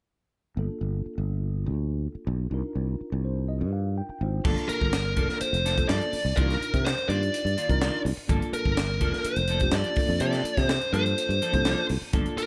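A straight 4/4 groove at 125 BPM drives this slick electric jazz fusion excerpt in G minor, opening with a mellow tine electric piano through analog chorus and a growly, sustaining fretless bass over Gm9 and Cm11 chords, the piano adding a fill from 3.0 seconds. At 4.4 seconds a crisp, punchy fusion drum kit with a high-tuned snare and gritty, pumping room sound kicks in alongside dark, chorused clean guitar stabs tucked in the background. From 4.7 seconds a smooth overdriven lead guitar with slapback echo carries the melody up front, moving through a C13sus4 near the close in light small-room reverb.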